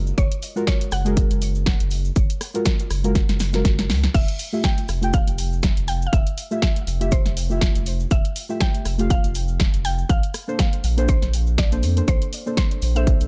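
A dry, echo-heavy mix frames this soulful deep house excerpt, where a woody, mallet-like synth pluck carries the melody through chorus and dub echo while soft, nasal chord stabs with a filter sweep and tape echo move from Gbmaj9 to Fmaj9 at 4.1 seconds and on to Bbmaj9 at 10.1 seconds. Underneath, a round, dark analog bass pumps against the sidechain, and a layered electronic kick sits up front. A punchy analog drum machine supplies snare, hi-hat, rim click and crash, with a drum fill between 3.2 and 4.1 seconds, while a grainy cabasa shimmers in the background.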